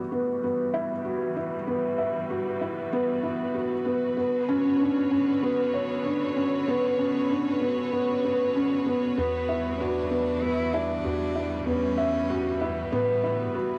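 Cassette tape coloring, small-room ambience and a lush hall reverb frame this cinematic, moving piano-and-strings electronica excerpt at 96 BPM in 4/4. A soft, felt-muted upright piano riff sits intimately up front with analog delay, while a bright, bowed studio string section holds sustained chords under a filter sweep through the build-up over Emadd9 and Bmadd9. At the drop at 9.2 seconds, a clear, focused solo cello melody with vibrato enters over Emadd9 alongside a round, deep analog bass that stops at 13.5 seconds.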